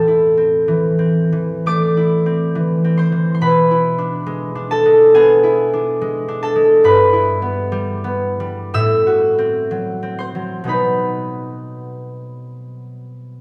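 A bright, ringing concert harp, fingerpicked and up front, plays alone across this wistful, gentle classical excerpt at a rubato 56-72 BPM in 4/4, spanning G2 to E6 and tuned to A4 = 441 Hz as it moves from Am through E7/B, settles into E minor at 6.9 s, and comes to rest on B at 10.7 s, set in a wet recital hall reverb heard from further back in the room.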